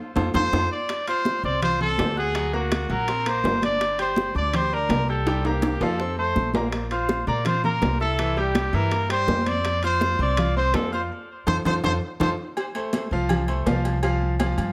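A straight 4/4 salsa groove, punctuated by drum fills and band accents at the start and near 11.1 seconds, carries this festive, sunny fragment, with woody, thumpy pizzicato upright bass up front, brilliant grand piano accompaniment full of audible action noise, bright high-tuned congas, tight close bongos and cowbell, and ringing metal-shelled timbales with agogo bells, while a punchy, roomy solo trumpet with vibrato and tape echo carries the melody until 12.3 seconds.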